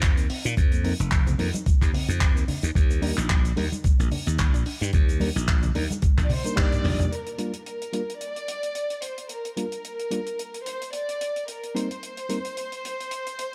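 This nu-disco excerpt opens at 110 BPM in G minor with a soft, round pluck playing arpeggios in the background, coloured by chorus, 12-bit sampler grit, sidechain pumping and analog delay. Beneath it sit a bright, growly slap bass and a thumpy, gritty electronic kick, both up front. A damped 70s kit adds dry handclaps, hi-hat, shaker and toms with a rolled-off top, while a reedy, clean electric piano and thin-skinned congas in the background fill out a groove with a light swing on the sixteenths. The mood is cosmic and sleek, moving from F7sus4 to Ebmaj7 until a drum fill and band accent lead into the second part at 7.1 seconds. There the pluck, bass, congas and kick have dropped away, and a close, intimate chamber violin section, which entered just before at 6.2 seconds, carries the melody over Gm7 and Cm7, bowed sul tasto with light vibrato and a soft attack and touched by analog delay.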